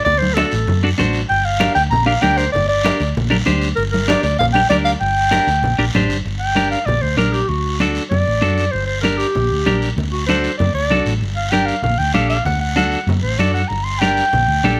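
Danceable and fiery, this fast cumbia excerpt at 193 BPM in G harmonic minor sets a clear, jazz-style clarinet with light vibrato and scooped notes up front, taking a solo from 6.3 seconds, over a dark, round hollow-body bass, a twangy, compressed clean electric guitar, thin-skinned congas with a vintage, band-limited bite in the background and a raspy, distant guiro, all in light reverb over a chord cycle of G minor and D7.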